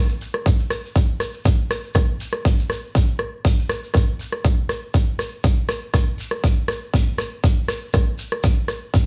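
A straight four-beat highlife groove sets a sunny, carefree mood in this short section of a longer piece, shifting into a new section at 4.0 seconds. The big-room dance drum kit sits up front with an electronic, layered sound, a punchy kick, metallic hi-hats and a rim click. Beneath it, a grainy, mellow shekere adds acoustic texture, and the band sounds as though it is playing live together in one room with moderate studio reverb.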